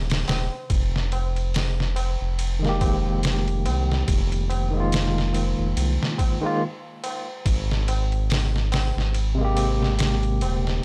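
A round, deep analog bass sits up front from the very start, moving between Eb1 and C2 with a fast attack and sustained, evolving tone in this dark, hypnotic trip hop piece cut from a longer work. Alongside it, a sampler-style drum kit, compressed and pitched down, lays a gritty groove at 71 BPM in 4/4 with a swung 16th feel, built from a thumpy kick, medium-tuned snare, hi-hat and ride cymbal that sound re-recorded in a small room. A low-tuned, ringing tabla sits distant in the background, set in a large room. At 2.6 seconds a barky tine electric piano enters through a combo amp, clean and up front, with tremolo and tape echo as it spans C3 to G4. The harmony in F minor settles on Fm11 before shifting to Abmaj9 at 7.5 seconds, all framed by digital ambience on a dry, coarse hardware recording.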